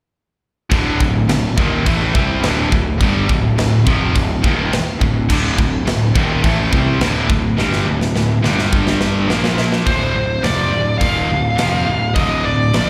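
This fragment sounds like a live gig heard through a venue's PA, with small-room and recital-hall reverb around it. It is heavy, epic metal in a straight 4/4, driven by a tight, polished acoustic drum kit up front whose bright cymbals (china, crash and hi-hat) sit over a medium-tuned snare and a tight kick. A growly, punchy picked bass with fuzz and overdrive shares the front of the mix. Behind them, three rhythm guitars play the riff together: a distorted high-gain part and a scooped high-gain part, both with slapback echo, plus a very quiet double-tracked overdriven guitar that drops out at 9.9 seconds. The chords move from D minor through G and B-flat power chords, and a drum fill starting at 7.6 seconds leads back to D minor. At 9.9 seconds a bright, distorted lead guitar steps up front with a high melody, treated with slapback echo and delay.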